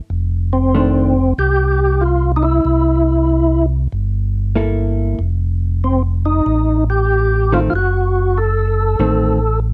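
The sound is dry and intimate, caught with close, detailed microphones that put each instrument up front. This is a bluesy, greasy jazz organ groove in 4/4 at 94 BPM, with a swung eighth-note feel, taken from a longer piece. A mellow tonewheel organ carries the bass line from 0.1 seconds, round, dark and clean, with key click and a slow-turning rotary speaker. At 0.5 seconds a second tonewheel organ takes the melody, fat and lightly overdriven, with second-harmonic percussion, chorus vibrato, key click and the same slow rotary spin. A vintage hollow-body electric jazz guitar adds picked, compressed accompaniment from 0.7 seconds, its tone dark and clean. The harmony moves through F13, C6, F9 and F#dim7.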